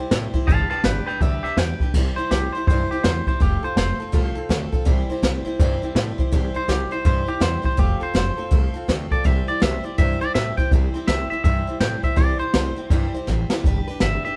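A swung 164 BPM rockabilly shuffle in 4/4 and C major rolls along with a retro, rollicking mood, driven by an up-front brushed drum kit with a high-tuned snare, boomy kick and dark cymbals, while a woody, growly pizzicato upright bass thumps beneath. A bright, boxy parlour acoustic guitar picks out the accompaniment as a clean, scooped, twangy electric guitar carries the melody and takes a solo from 1.9 seconds, with a brief drum fill at 13.3 seconds leading into a final G chord. The band plays live together in a moderate stone room whose reverb gives this cut-from-a-longer-piece snippet a lively, natural ambience.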